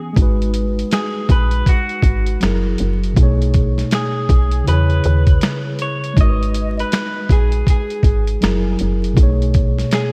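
Opening with a mellow tine electric piano with cassette tape coloring that moves through G#m7, F#9, B13 and E6, this hazy, reflective lo-fi hip hop excerpt at 80 BPM in G# minor with a 16th-note swing is soon carried by an up-front, gritty, thumpy sampler-style drum kit with finger snaps, hi-hat, kick and snare and a round, woody FM bass, joined by a slightly broken-up electric guitar melody entering at 0.9 s through a diffuse ambient delay, all under a light digital ambience and vinyl crackle.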